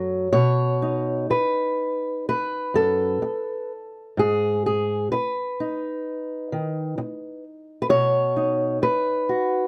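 An old ladder-braced acoustic guitar, fingerpicked and set up front, carries this short folk piece entirely on its own from 0.0 to 9.7 seconds. Its tone is woody and dark, with the dull ring of old strings giving the sound a worn, lived-in character. The playing moves in a loose, rubato 4/4 feel, spanning F#2 up to C#5 as the harmony passes from Badd9 to G#m at 4.2 seconds and back to Badd9 at 7.9 seconds. The mood is melancholic and wistful, like a quiet reflection caught mid-thought. A light reverb surrounds the guitar within a dark, warm production, and the passage is cut from a longer piece.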